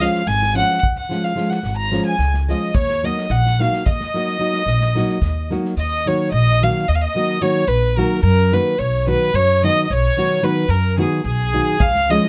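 A fiery, virtuosic Balkan wedding-band piece in 11/8 opens with a reedy, gut-string fiddle carrying the melody up front over fingerpicked classical nylon-string guitar with audible finger squeak and a growly, woody pizzicato upright bass, while a pure, floating sul tasto violin traces a soft second line in the background and a punchy unplugged drum kit played with bundle sticks drops out at 5.7 seconds before returning at 11.8 seconds, heard through close, detailed microphones with light reverb.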